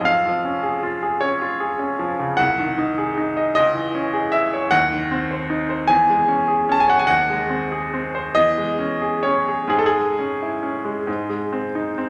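This is a romantic classical character piece for solo piano, a brief fragment lifted from a longer work with a bittersweet, passionate mood. It moves in 6/8 with a slow, rubato feel, the phrasing stretching and yielding freely. A single baby grand carries everything from 0.0 to 12.1 seconds, ranging from deep in the bass up into the upper middle register. Its tone is bright and brilliant, placed up front and intimate, with short sustain and audible action noise adding a close, tactile presence. The recital hall around it is wet, lending a resonant glow as the minor-key harmony passes through dominant-seventh and diminished colours before settling toward a dominant chord at 11.1 seconds.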